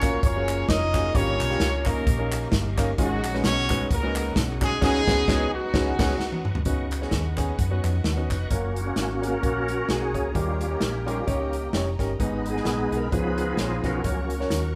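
Jubilant and uplifting, this uptempo gospel cut from a longer piece moves at 130 BPM in F# major with a light swing, as a punchy, tight horn section carries the melody up front over clear, woody upright piano, reedy organ with key click and fast rotary speaker, a round, dark hollow-body bass, an airy country drum kit with a punchy kick, and crisp, very quiet handclaps. The horns drop out just before a band accent and drum fill finish at 6.7 seconds, when a lush, distant string section enters in the background with portamento and expressive vibrato. From 8.5 seconds the bright organ takes a solo through to the end, all heard in a natural room sound with moderate reverb.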